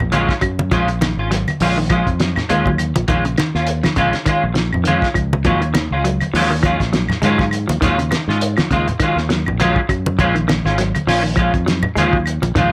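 A swung 16th-note afrobeat groove at 101 BPM in 4/4 drives this defiant, intense excerpt in Eb minor, cut from a longer piece and moving between rootless Ebm11 and Bbm7 chords. A cloth-damped drum kit sits up front from 0.1 seconds, its muffled, gritty sound carrying a fat snare, tight kick and hi-hat with a rolled-off top. The fingered electric bass adds a dark, round, punchy low end, while close, dry congas with a bright, thin-skinned tone sit in the background and woody claves tap from 0.4 seconds. A clean, picked electric guitar plays chorus-treated stabs up front, and a softer semi-hollow guitar, fingered and hollow in tone, weaves arpeggios in the background. Light reverb colours the ensemble through the full 12.7 seconds.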